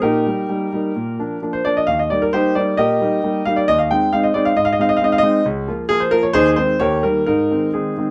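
This classical-period piano sonatina in Eb major moves at 133 BPM in a straight 4/4, with a cheerful, playful character across its 8.1 seconds, taken from a longer piece. A single concert grand piano carries the music alone from start to finish, spanning Db2 to G5, its deep bass and long sustain giving the lines a smooth, vintage quality. The instrument sits up front in a light reverb, and its tuning rests at A4 = 436 Hz. The harmony opens on Eb over Bb, passes through Bb and Eb, then colors the phrase with Ab over Eb and a Bb minor chord over Db. An Eb7 at 6.8 s leads the passage toward a close on Ab.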